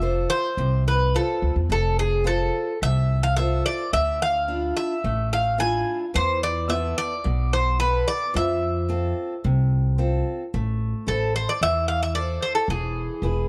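A bouzouki, an old ladder-braced acoustic guitar and an upright bass all sound together from the very start of this moody, brooding piece of Greek folk, cut from a longer performance. The bouzouki carries the melody up front, its picked double strings bright and metallic, with some strings doubled at the octave. Beneath it the guitar picks a boxy accompaniment, while the upright bass, played pizzicato on gut strings, gives a woody, thumpy foundation that also sits forward in the mix. The band moves in a straight 4/4 at around 109 BPM and gradually speeds up, with chords moving through F, Dmadd9, Esus4 and back to F. At 10.5 s a new passage turns to A minor and then E, deepening the brooding character. Light reverb and a dark, warm production wrap the trio in a close, shadowy sound.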